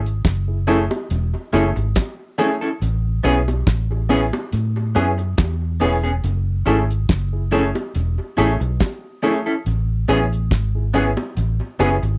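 A round, foam-muted electric bass opens this lovers rock reggae excerpt, joined almost at once by a damped 1970s drum kit with a fat snare and tight kick touched by tape echo. A grand piano with audible action noise and long sustain supplies the accompaniment, while a clean, hollow-body electric guitar adds picked stabs and low-tuned bongos, also carrying tape echo, sit further back in the mix. The gently swung feel, the dry, close studio sound and the shift from F#m7 to Amaj9 give the music a longing, bittersweet mood.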